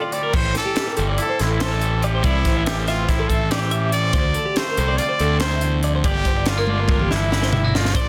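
Math rock and midwest emo in a restless, intricate 9/8 that moves through Am7, Dm7 and Gm7. A close-miked, punchy trumpet carries the melody up front with slapback echo, while a clean, compressed twelve-string electric guitar picks arpeggios through tremolo and a warm, twangy electric guitar accompanies in the background. A fuzz-overdriven picked bass joins at 0.3 seconds, and a crisp fusion kit with bright cymbals, a high-tuned snare and a punchy kick drives from a small, pumping room, ending on a drum fill from 6.7 seconds, set in light reverb within a dense, heavily limited modern master.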